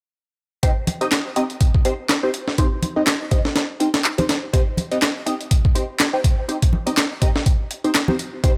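A band-passed chord stab sits up front, its nasal sawtooth tone plucked through a filter with a fast attack and a decaying tail, coloured by phaser, ensemble chorus and tape echo as it punches out stabs in C minor between C4 and Eb5. This short cut from a longer breakbeat track moves at 123 BPM in 4/4 with a 57% swing on the sixteenths, giving it a funky, energetic feel that holds on a single Cm chord. A gritty, sampler-style breakbeat kit drives the groove from 0.6 s, compressed and pitched up, with a thumpy kick, a high-tuned snare, hi-hat and a tape-warm edge in a small room. Low-tuned acoustic congas with a thick, damped skin and soft hands join at 0.9 s, while dry, overdriven analog handclaps sit in the background from 1.1 s. Light digital reverb adds a touch of space around the whole short passage.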